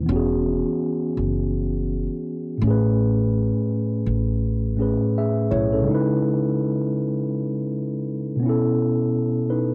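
A mellow tine electric piano carries this nostalgic, dreamy lo-fi hip hop fragment, sitting up front with a clean tone heard through its built-in speakers as it plays the accompaniment across the full 9.7 seconds. The groove moves at 83 BPM in 4/4 with a light swing on the sixteenths, in E major, and the chords pass from E69 to Amaj9, C#m9 and B9sus4. Underneath, a pizzicato upright bass with steel strings gives a woody, growly low end, also up front, before it drops out at 5.8 seconds and leaves the piano alone. The whole recording has a worn cassette-tape character with warbly pitch drift, set in a moderate studio reverb. Cut from a longer piece, it keeps its warm, wistful glow throughout.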